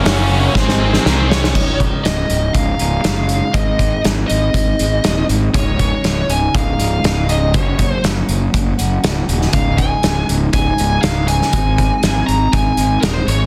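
A growly, overdriven fingered electric bass sits up front from 0.1 s, punchy and fuzzed, anchoring this cathartic, bittersweet stretch of quiet-loud alternative rock cut from a longer piece. Beside it, a loose indie drum kit with a punchy kick, medium-tuned snare, dark cymbals and a pumping room sound plays along, throwing in a fill just before the music shifts at 1.5 s. Over the top, a dark, high-gain lead guitar carries the melody throughout, while two bright, picked fuzz guitars, one of them thicker, play a distorted riff in the background only until 1.5 s. From there a twangy, clean twelve-string electric guitar enters in the background with phaser-treated arpeggios over chords moving through Dbadd9, Ab, Gb and Dbsus2. The sound is dense and heavily limited, with a moderate large studio reverb and a touch of small room ambience.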